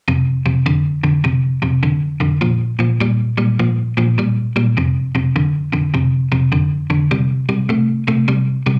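Blues with a swaggering, gritty mood, this short excerpt, cut from a longer piece, moves at 103 BPM in 4/4 with a swung eighth-note feel in F major. A lone electric guitar carries the whole passage from 0.1 to 8.8 seconds, picked and sitting up front, its tone warm and slightly broken-up at the edge of distortion. It stays in a low register, from F2 up to A3, moving through power-chord shapes on F, then B-flat at 2.4 seconds, back to F, and onto C at 7.1 seconds. The sound comes from a live gig heard through the venue's PA, wrapped in a wet club ambience with a short reverb tail. The result feels loose and immediate, like standing in a small room as the player digs into a basic blues progression.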